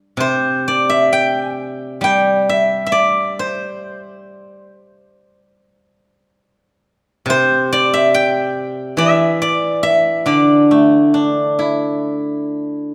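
A silvery, ringing steel-string zither sits up front in a moderate concert hall reverb, playing alone with fingerpicks from C3 to G5 in this flowing, pastoral Chinese traditional excerpt at a rubato 69 BPM in 4/4, cut from a longer piece and running from 0.2 to 12.9 seconds.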